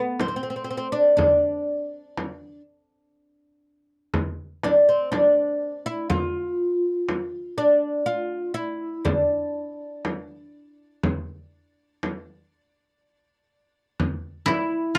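Longing and melancholic, this fragment of a longer Turkish makam ensemble piece in D makam nikriz moves through a straight 10/8 at 122 BPM in eighths: a bright, woody, fretless oud carries the melody up front on plectrum-plucked double strings, a deep, vintage, band-limited frame drum sounds alongside it, and a fingerpicked koto slips in with a second line at 14.5 s, heard in a close, dry 1970s-style studio sound tuned to A4 = 439 Hz.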